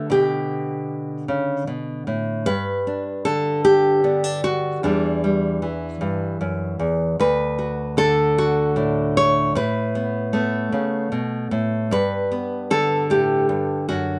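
A fingerpicked nylon-string guitar plays this peaceful folk excerpt alone, its classical, warm tone sitting up front in a moderate studio reverb. In a slow, straight 6/8 at 51 BPM, it moves from an opening Gadd9/B through G, Em7, D and Asus2 to a closing Gmaj7, with the second passage beginning at 2.5 seconds and unfolding to the end at 14.2 seconds. The live room sound keeps the solo playing intimate and unhurried.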